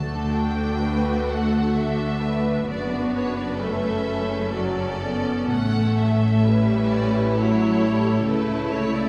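In a flexible, rubato three-beat pulse, this short passage from a slow romantic orchestral movement unfolds with a serene, tender mood. A distant violin section carries the melody with a clear, intense vibrato, while a second, more focused violin section sings a line beneath it. The violas fill in the accompaniment with a lush, smooth-topped tone, and the cellos, close and even, join the double basses to anchor the bass with a rich, bowed depth. Timpani struck with hard mallets add an articulate note in the background, falling silent at 1.2 seconds. The strings sit in the generous reverb of a church or concert hall, which lends the sound a spacious glow.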